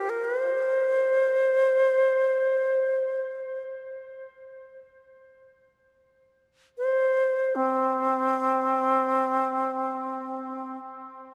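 Drenched in a wet cathedral reverb with a dark, warm production, this short passage cut from a longer piece of meditative world music unfolds in free time with a spacious, contemplative mood. A lone alto flute carries everything up front, its airy, bright tone shaped by vibrato, tongued notes and lifted highs, wandering between C4 and C5 through a diffuse ambient delay. The flute sounds from the start until 10.8 seconds.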